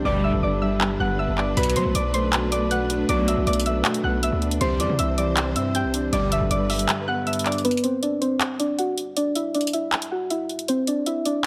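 A soft, round pluck carries an eerie, menacing trap melody at 158 BPM in half-time, over a mellow vintage baby grand piano, lush bowed strings in the background, a punchy 808 bass, bold detuned polysynth stabs with chorus and phaser, and tape-warm trap drums with bright hats and handclaps that enter at 0.8 s, while the kick drops out from 6.9 s and a filter sweep runs through the closing section from 7.6 s in this fragment cut from a longer piece.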